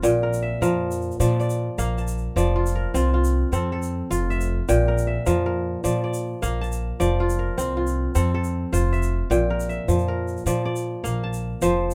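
Kora, upright bass and tube shaker all begin together at the opening, settling into a hypnotic and joyful West African string groove in 12/8 at 104 BPM. The fingerpicked kora sits up front with crisp, ringing arpeggios that span from Bb2 up to A5, its bright tone carrying the music. Beneath it, the pizzicato upright bass, strung with steel, gives a woody, growly foundation between F1 and Bb2, also placed up front. Quieter in the mix, the tube shaker adds a grainy acoustic texture with a live-room feel. The harmony moves steadily between Bb and F across the short passage, which is cut from a longer piece and tuned slightly high at A4 = 441 Hz, all set in a light reverb.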